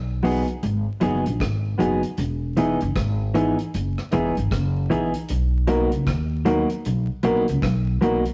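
Hypnotic and serious, this roots reggae excerpt moves at an unhurried 77 BPM in 4/4 with a swung sixteenth-note feel, cut from a longer piece. An up-front upright bass, plucked pizzicato with a woody tone on steel strings, opens alone at 0.0 seconds and holds the low end throughout. From 0.2 seconds a clean, fingered electric guitar, compressed and placed forward, carries the accompaniment, while a smooth, vintage-sounding upright piano adds stabs. A deep reggae drum kit, dry with a tight kick, keeps hi-hat and rim clicks sitting lower in the mix. The harmony moves from G#m7 to Emaj7 at 2.2 seconds and Bmaj7 at 5.3 seconds, all wrapped in a moderate stone-room reverb, the rough feel of a rehearsal room, warm saturation and a bed of vinyl crackle.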